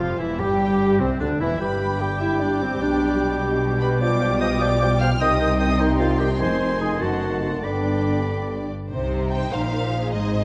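A full orchestra opens together in a dramatic, stormy, fast romantic movement in 6/8 at 99 BPM with a rubato feel, settling into C minor from 4.0 s. Lush, expressive violins sing the melody with vibrato over a second violin line, a clear clarinet and oboe, and an airy, very quiet flute ensemble, while a mellow bassoon and a very quiet viola section with portamento accompany and a background French horn section holds sustained chords above rich cellos and focused double basses. The winds and horns fall away at 8.7 s, leaving the strings to carry the harmony to a C minor chord in a dark, reverberant scoring-stage sound.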